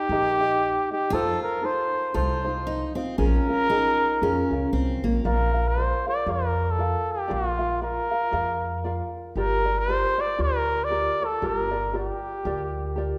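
Relaxed and dreamy, this Hawaiian piece swings gently at 116 BPM, with a mellow, punchy trumpet carrying the melody up front in a classical style with light vibrato. A bright, picked steel-string guitar plays a second line until 5.2 s, where the harmony moves from B-flat harmonic minor into B-flat major. A light, fingerpicked ukulele and a woody, thumpy pizzicato upright bass on gut strings carry on beneath, all set in a moderate concert-hall reverb.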